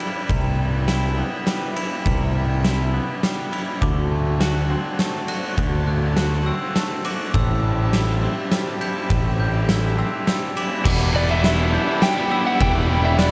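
A big arena sound fills this brooding, cathartic post-rock excerpt, with a lush hall reverb spreading around the parts, moving at 102 BPM in a straight 3/4 in E minor. An oversized, low-tuned acoustic drum kit sits up front with a boomy kick, dark cymbals and a gritty, pumping room character, while a round, fuzz-soaked picked electric bass drives just as close, entering at 0.3 seconds. A twangy, clean, compressed electric guitar picks arpeggios through a slapback echo, and a chamber string section with a reedy, gut-string period tone holds sustained chords in the background. A ringing, bell-like glockenspiel struck with hard plastic mallets adds distant arpeggios from 3.8 seconds, while the chords move through Cmaj7, D7 and Am7. Just before the harmony lands on Em7, a bright, tight, double-tracked distorted guitar riff enters at 10.8 seconds, joined shortly after by a slightly broken-up slide guitar melody played with fingerpicks, both carrying the slapback echo to the cut.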